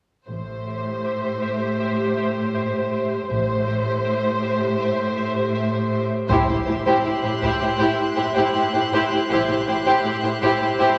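A dark, smooth violin section carries the melody up front in this eerie, mysterious suspense cue at 80 BPM in A dorian, over bowed cello and a soft-edged double bass in the background, while a bright, detuned, tempo-synced gated texture with chorus pulses sustained chords from 0.7 seconds. At 6.3 seconds a lush second violin line with portamento, violas, a close, high violin texture, background taiko and a huge but very quiet impact all enter together. The whole string ensemble sits in a scoring-stage reverb, and the taiko stops at 7.8 seconds in this excerpt from a longer piece.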